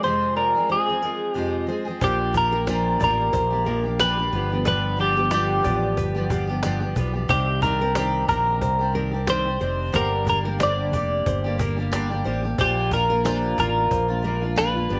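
Carefree and easy-going, this acoustic pop excerpt in Bb major moves at 91 BPM with a gentle 16th-note swing, as a clean, compressed twelve-string electric guitar carries the melody up front through phaser and slapback echo over a double-tracked, full-bodied jumbo steel-string acoustic, fingerpicked with audible finger squeak, and a deep classical nylon-string guitar playing arpeggios in the background; these three guitars open with a short break before a round, punchy fretless electric bass and a snappy, dry cajon with snares join at 2.0 s, followed by a jingly, saturated tambourine at 2.7 s, all set in light small-room reverb.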